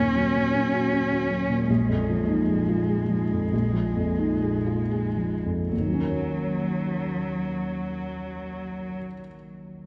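A felt-muted upright piano sits up front with a dark, intimate tone, its thick felt softening a part that reaches from the low bass to the middle register, while a single bowed cello adds a rich, focused second line with vibrato. This short neoclassical passage in Eb minor and 3/4 moves freely between 74 and 104 BPM, slowing from 0.8 to 5.7 seconds as the harmony shifts from Ebm7 to Bb7sus4, then settles back on Ebm7 as a new section begins. The cello stops at 9.0 seconds and the piano rings on alone, both held in a long church reverb that gives the longing, reflective mood a spacious glow.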